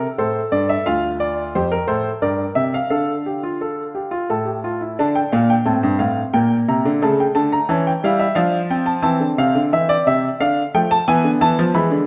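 Classical music in a baroque style, this is a three-part fugue for solo grand piano, serious and driving in mood and set in a straight triple metre. The piano has a warm, present tone and sits up front, ranging from D2 up to B5 as the three voices move through the texture. A second section begins at 5.0 s, and the harmony draws on minor chords such as Dm, Gm and Am, with A7/C# and a closing E7 adding tension. The instrument rings in a wet recital hall with a reverb time of 1.4 seconds, and the top end is rolled off for a rounded sheen. The passage lasts about 12.1 seconds and is cut from a longer piece, so it stops mid-thought.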